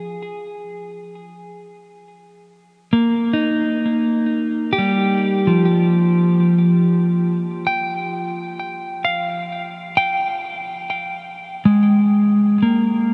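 Ambient and reflective, this serene piece, cut from a longer work, features a lone clean electric guitar, dark and compressed, its picked notes sitting up front with delay trailing behind them. The guitar moves from a Bb5 chord to Fmadd9 at 5.3 seconds, all suspended in a huge, wet reverb with a 7.6-second tail. A cassette-tape dullness rounds off the top end, lending the sound a hazy, aged softness.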